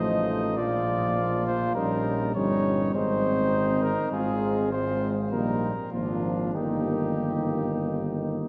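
A close-miked, mellow cornet carries the melody up front in this brief classical brass quintet passage, which is cut from a longer piece and lasts about 8.5 seconds. Beneath it, a soft-attacking flugelhorn sings a second line from a distant, roomy position. A clear euphonium with light vibrato and a French horn, also set far back, fill in the accompaniment in the background. A tuba anchors the bass up front, giving the ensemble a solid, rounded floor. The recording sits in a wet cathedral reverb that lends the noble, warm mood a spacious, reverent glow as the harmony moves through its chords.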